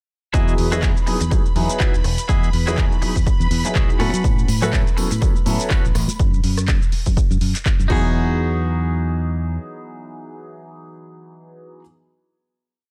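The recording sounds dry, with little reverb, on this joyful, feel-good piece of filtered disco house at 123 BPM in E major, its 16ths lightly swung. A punchy electronic kick sits up front in a steady four-on-the-floor, while an analog drum machine adds programmed hats, claps, rim clicks, shaker and crash, all pumping against the kick. A fingered electric bass plays a funky syncopated line with tube-saturated grit, beneath a mellow dark grand piano chord riff treated with phaser and a twangy, compressed clean guitar picking funk chord rhythms. In the background, a lush vintage string machine holds a high note through phaser and ensemble chorus, and soft tambourine and congas join at 4.2 seconds. The harmony moves from Emaj9 to A69, and at 6.2 seconds the strings and hand percussion drop out as the chords break off before Emaj9 returns. The drums stop at 8.0 seconds for a final hit, with the bass carrying on briefly and the piano and guitar ringing through to the end.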